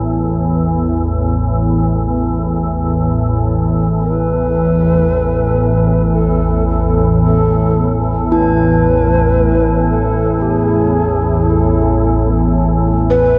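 Swathed in huge reverb and the warbling pitch drift of worn cassette tape, this dark, ominous ambient drone excerpt at 56 BPM sets a detuned, chorused organ-like drone up front on an Asus2 chord, with a metallic bronze singing bowl ringing meditatively in the background, while a breathy, mellow shakuhachi with vibrato and delay enters at 4.0 seconds, gradually swelling in as it carries the melody.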